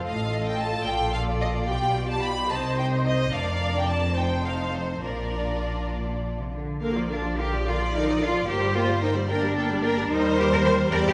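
Two violin sections, one clear on the melody and one lush with a smooth top carrying a second line, open this cheerful, spirited classical-period movement for string orchestra together with a rich viola section. They are joined at 0.1 seconds by a focused cello section and a soft-attacked, up-front double bass section on the bass, all bowed with vibrato in 6/8 with rubato. The ensemble rings in the wet reverb of a scoring stage, and a new section begins at 6.8 seconds before the passage is cut off at 11.1 seconds.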